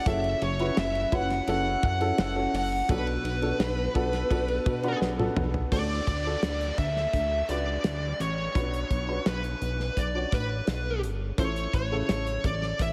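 A steady, straight 4/4 pulse at 85 BPM drives this earnest piano-driven pop passage in B minor, cut from a longer piece. A damped 70s acoustic drum kit with a tight kick, medium-tuned snare, hi-hat, ride and toms sits dry beneath a chorused synth bass that is glossy, dark and up front, its pulse and sawtooth tones shaped with ring modulation, wave-folding, a filter pluck and a fast attack. A clear, woody upright piano, slightly detuned, carries the accompaniment through F#m7 and Bm7 with a touch of slapback echo, while a bright, high-gain electric lead guitar plays the melody up front, distorted and picked, trailed by slapback echo and digital delay. A drum fill at 5.0 seconds leads into a new section at 5.7 seconds, where the chords move through D, Bm and A and an electronic downlifter drifts in the background until 11.4 seconds. A lush hall reverb gives the mix a big arena sound.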